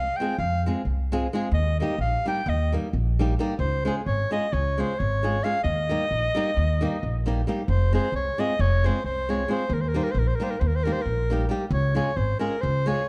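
Balkan folk in the manner of a Balkan wedding band, this virtuosic, exuberant excerpt runs in 9/8 at 266 BPM in eighths and speeds up throughout its 13.1 seconds, cycling through Fm, Eb and Db in Eb mixolydian. A clear, close-miked soprano saxophone carries the melody up front in a classical style with vibrato and a soft attack, while a bright, fingerpicked flamenco guitar accompanies with audible finger squeak and a woody pizzicato upright bass on steel strings anchors the low end. Light reverb and a dark production round out the sound as the same section plays twice, the second starting at 7.7 seconds.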